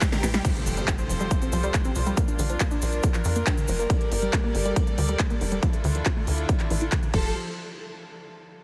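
A punchy, up-front electronic kick drives this uplifting, euphoric trance excerpt, joined by a big-room dance kit with crisp hats and handclaps, a tight sawtooth sequencer bass from 0.2 seconds, a round, chorused analog pluck playing arpeggios under a filter sweep, rich bowed chamber strings holding sustained chords from Fadd9 through Bb and Gmadd9 to Dmadd9, a grainy cabasa until 3.9 seconds, a very quiet electronic impact, and a huge detuned supersaw lead with phaser and tape echo sitting in the background, with the lead, strings, pluck and bass all pumping against the kick under a heavily compressed, radio-like sheen.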